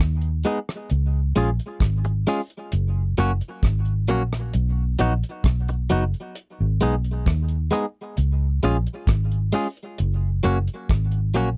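A slow, straight 4/4 groove at 66 BPM anchors this laid-back, sunny roots reggae piece in F# major, with a damped 70s drum kit of tight kick, hi-hat and rim click sounding dry and warm with a rolled-off top, and a round, foam-muted fingered electric bass sitting dark and up front from the start. A bright, twangy clean electric guitar, picked and compressed with tape echo, enters at 0.4 seconds over a cycle of G#m, C#, F# and B. The dry, close 1970s-style studio sound, cut from a longer piece, keeps every part intimate and present.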